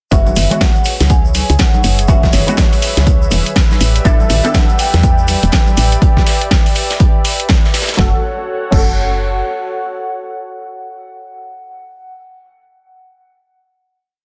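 A late-night deep house track at 122 BPM in F# phrygian opens straight into a swung drop, with a punchy four-on-the-floor electronic kick, a gritty sampler-style kit with fat snare, a very quiet saturated breakbeat from a tight metal kit, and background congas and a grainy tube shaker, all under a round, woody FM bass riff, muted phaser-washed dub chord stabs with echo, a warbling chorused pad with vintage 12-bit sampler texture, and a soft-mallet vibraphone melody trailing ringing dub echo, before the drums and kick drop out by 8.9 seconds and the stabs, pad and vibraphone carry a final F#m chord.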